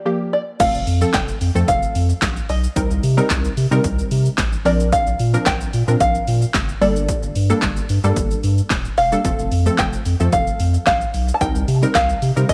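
A twangy, plunky fingerpicked open-back banjo with tape echo carries the melody from the start of this energetic, bittersweet dance-pop fragment at 111 BPM, joined by detuned, mellow sawtooth chord stabs with chorus and sidechain pumping, and at 0.6 seconds by a deep, saturated sine sub bass that also pumps and a punchy, tape-toned analog drum machine of kick, snare, handclaps, hi-hat, shaker and crash, all in a light reverb over a Gm7, F, Cm7, Bbadd9 and Gmadd9 progression.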